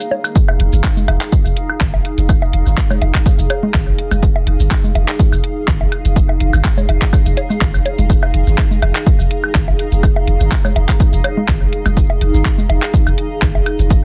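A swung 4/4 groove at 124 BPM, with 54% swing on the 16ths, drives this cool, sparse minimal techno cut from a longer piece in F minor. From the start, a layered garage drum kit lays down handclaps, bright hi-hats and shaker, with soft clipping on its snare, while bongos, woodblock and congas add tape-warm analog colour through a digital delay. At 0.4 s the drop arrives on an Fm7 chord with an up-front, punchy electronic kick, and a deep sine sub bass joins at 0.6 s, moving between F1 and Ab1 with a pitch-drop attack and sidechain pumping. Above, a dark, cloudy granular pad spanning Eb4 to F5 evolves with a slow attack, long release and a moving notch, bathed in its own built-in reverb and pumping too. The room is dry, and the master is dense and heavily limited in a modern style.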